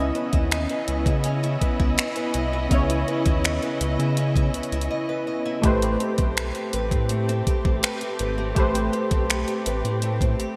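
A sensual, moody slice of contemporary R&B at 82 BPM opens on a C#m9 chord, with detuned analog keys under chorus, intimate bowed strings with vibrato, and a boxy ladder-braced acoustic guitar picking arpeggios through subtle chorus and digital delay, above a round, deep analog bass. From 0.1 seconds a smooth electronic R&B kit sits up front with finger snaps, hi-hat and a knocking kick in gated reverb, and after a brief break from 4.9 to 5.6 seconds the harmony moves to Am9. The bright 1980s-style digital production is bathed in a lush hall reverb.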